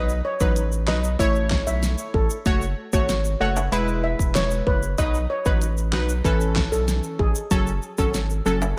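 Dancehall at 95 BPM with a bouncy, summery mood, cut from a longer piece and cycling through B, A, F#m and E. A shimmering, metallic steel pan carries the melody through tape echo. Punchy, detuned sawtooth brass stabs with chorus sit up front over a thick, saturated sub bass, while close, dry egg shaker and timbales join at 0.1 seconds. A layered pop drum kit of handclaps, hi-hat, punchy kick and fat snare, roughened by vintage 12-bit sampler grit, enters at 0.4 seconds, all within a dreamy mix soaked in plate reverb.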